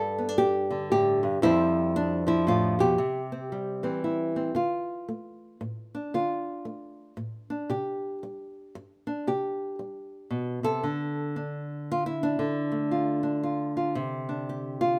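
A small, up-front nylon-string guitar sits in light reverb, fingerpicked with a warm, acoustic tone across this short folk excerpt. Playing alone in a lilting 3/4 with a gentle swing, it moves through three sections, shifting at 4.6 and 10.8 seconds, as the harmony wanders from G5 and Fadd9 through Dm and C5 before settling on Csus2. The mood is hopeful and pastoral, like a quiet moment outdoors.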